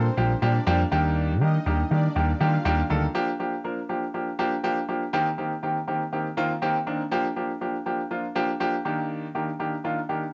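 Recorded at home on cassette with light reverb, this energetic, driving dance-pop excerpt opens on a drop where a lush, detuned supersaw pad carries the melody in the background until 2.5 seconds and a dark, round, hollow-body picked electric bass sits up front until 3.1 seconds, leaving a warm, present baby grand piano to carry the chords alone through to 10.2 seconds.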